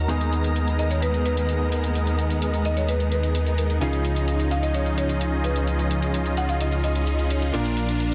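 Festival progressive house at 129 BPM, powerful and euphoric in this short excerpt, where a thick, chorused detuned saw bass sits up front on Bb1 beneath huge supersaw chords with cassette-tape grit, low-pass filtering, delay and a filter sweep, while dark bowed strings hold sustained chords, a warm grand piano and a woody, buzzing marimba melody with delay sit in the background, metallic electronic hi-hats enter at 0.1 s, and the harmony moves from Abmadd9/Eb to Dbadd9 and lands on Bb at 7.5 s in a dense, heavily limited mix.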